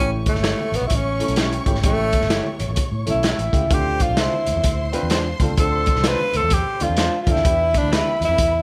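A gritty, saturated breakbeat kit sits up front in a moderately reverberant studio room on this joyful, danceable fragment of uptempo 1960s-style soul, swinging at 128 BPM in 4/4 over A7, Dm7 and Em7. A breathy, whispered tenor saxophone carries the solo melody with vibrato and plate reverb, backed in the background by a lush bowed string section and by a picked, slightly broken-up electric guitar adding stabs from 0.4 seconds. A woody upright piano with audible action noise, a round foam-muted fingered electric bass, and low-tuned, very quiet congas that sound distant, as if in a large room, fill out the groove.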